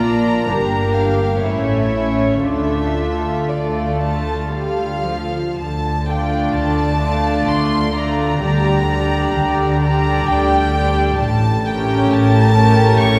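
Classical slow romantic movement for string orchestra, elegiac and yearning, in D minor and 3/4 at a rubato 56-67 BPM, where an intimate chamber violin section with light vibrato carries the melody over a pure, floating second violin line, rich violas in accompaniment, and a bass of smooth-topped double basses with background cellos, every section bowed sul tasto with soft attacks, moving through Gm7, A and Dm before a second section from 5.6 s brings Gm/D and A7b9, the ensemble heard from further back in a wet scoring-stage reverb in a passage cut from a longer piece.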